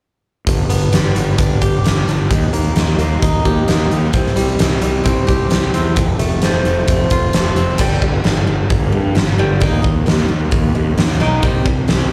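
A growly, overdriven fuzz bass sits up front beside a huge arena drum kit with a fat snare, punchy kick and bright cymbals in this restless, bittersweet quiet-loud alternative rock excerpt, heard as a live gig through a club PA. A boxy, picked swing-style acoustic guitar with slapback echo plays arpeggios over G, Eb, Cm and F, and at 7.8 seconds the second section moves to G5, Eb5 and Cm. The piece is cut from a longer performance and ends at 12.1 seconds.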